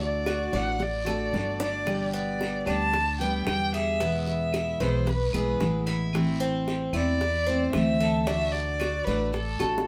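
Warm and danceable, this short excerpt from a longer piece sits in Cuban son and guajira at 112 BPM in a straight 4/4, in G major. An expressive bowed violin carries the melody up front, with soft attacks, vibrato and portamento, while a full-bodied picked steel-string acoustic guitar with fresh strings plays accompaniment. A Cuban tres adds arpeggios with a metallic edge from its double, partly octave-doubled strings, and a growly, thumpy pizzicato upright bass sits up front underneath. Round, low-tuned bongos played with hard hands sound close and dry, with a fill between 0.8 and 1.9 seconds, and woody claves and a raspy guiro, both compressed and saturated, join in the background from 0.3 seconds. The chords move from D through G, E and Am back to D, and the band plays live together in one room with a wet studio ambience.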